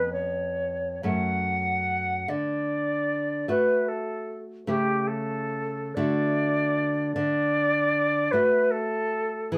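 The rhythm moves in a gentle 6/8 with uneven, freely stretched beats, giving this serene romantic duo an unhurried, breathing quality. A silver concert flute carries the melody from the first moment, its pure metallic tone shaded with vibrato and a crisp attack that keeps each phrase clear and expressive. Beneath it, a nylon-string guitar supplies fingerpicked classical accompaniment, sounding warm and acoustic and sitting close to the listener. The harmony passes from C#7/E# to F#m, then D, A7/C# and back to D by 6.0 seconds. The two players share one room with a moderate studio ambience, and the brief passage is cut from a longer piece, ending at 9.6 seconds.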